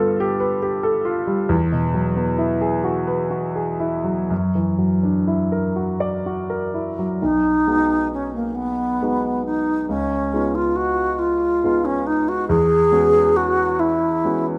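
In a rubato 6/8, this dreamy, pastoral impressionist duo opens with the grand piano alone, its warm tone and deep bass laying out lush, extended harmonies. At 7.2 seconds the mellow alto flute enters up front with an airy, tongued melody shaded by vibrato, floating over the piano in a moderate recital-hall reverb. Closely and clearly recorded, this fragment of a longer piece keeps both instruments present and detailed.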